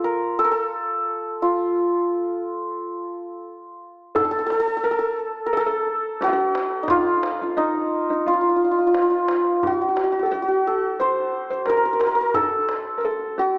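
A shimmering, hammered santur leads this stately, passionate Persian modal ensemble piece, sitting up front and carrying the melody on its own from the opening moment. Its ringing, acoustic tone stays in a compact middle register throughout the clip, which is cut from a longer performance in a straight, steady four-beat metre. At about 4.1 seconds a felt-muted upright piano joins with a second line in the same range, its soft, mellow voice sitting well beneath the santur, with thin felt and audible action noise giving it an intimate, natural character. A tombak enters at 4.2 seconds, deep and distant, as if heard across a large room, and kept low in the mix. The ensemble shares a moderate scoring-stage reverb, while the overall sound has the character of a small speaker.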